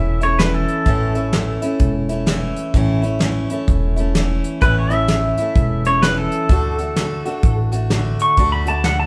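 This is a sunny, heartfelt stretch of honky-tonk and classic country, cut from a longer piece and moving with a relaxed swing in 4/4. The pedal steel guitar takes a solo from start to finish, sitting up front with a clean, compressed electric tone, played with fingerpicks and colored by slides and volume swells. Beneath it, a picked dreadnought acoustic guitar, also up front, plays a bright, full-bodied accompaniment on fresh strings, while a pizzicato upright bass with gut strings adds a woody, thumpy low end. A soft brush drum kit enters at 0.2 seconds, with a tight kick, a medium-tuned snare and hi-hat giving a gentle pulse. The harmony rests on A before moving to D at 6.5 seconds, and the whole band sounds as if it is playing live together in a stone room with a moderate reverb.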